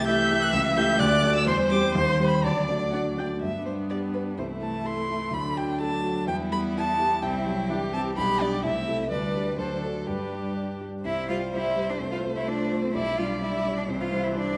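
A quick classical-period movement for piano quintet, this cheerful, graceful excerpt moves at 127 BPM in a straight 2/4, beginning in G major and turning to C major at 11.0 s. A dark-toned violin carries the melody with vibrato, soft attacks and expressive portamento, while a second violin, warm in color, shares the second line with a cello played sul tasto with light vibrato and an airy bow for an intimate sound. A rich, focused viola and a mellow, vintage-sounding baby grand piano with long sustain supply the accompaniment, the piano sitting up front as the loudest part. All five play throughout, and the harmony passes through chromatic chords such as A7/C# and Cm/Eb before settling on D, later cadencing through D7 to G at 10.1 s. A recital hall reverb, RT60 1.3 s, wraps the ensemble in a generous, wet space.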